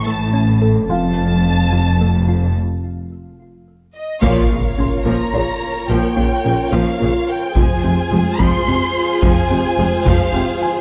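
Tense and futuristic, this cut from a longer hybrid orchestral and electronic film score moves at 72 BPM in a straight 6/8. It opens on A and F chords, with a lush violin section carrying the melody over bowed cellos and a rich double bass section, while a soft, felt-muted upright piano with audible action noise adds texture through digital delay. Threaded beneath is a round, tine-like synth pluck resembling a thumb piano, whose dark arpeggios pass through chorus, phaser and delay. After a break at 2.6 seconds, the music settles into Bb dorian at 4.2 seconds on a Bb minor chord, where a band accent lands alongside a background electronic impact and heavy-stick taiko drums recorded in a live room. A second violin line and a focused viola section enter there too, and the harmony moves to F minor as the piano drops out at 7.6 seconds. The mix is close and detailed, with light reverb.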